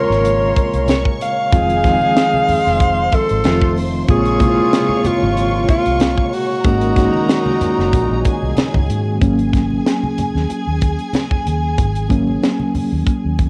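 Smooth and silky, this lush 1970s-style soul excerpt sets a clear, up-front alto saxophone with vibrato and scooped notes over bowed, lush studio strings, a reedy electric piano with medium tremolo, tight octave-doubled horn stabs and a gritty, overdriven tonewheel organ holding very quiet sustained chords. A dark, round, foam-muted fingered bass and a punchy, high-tuned funk drum kit drive a gently swung groove, with low-tuned congas joining in the background at 0.9 seconds. The saxophone drops out at 8.6 seconds, and from 9.2 seconds the electric piano takes a solo over strings, bass, drums and congas in a small room, with the piano, strings and drums carrying a cassette-tape coloring.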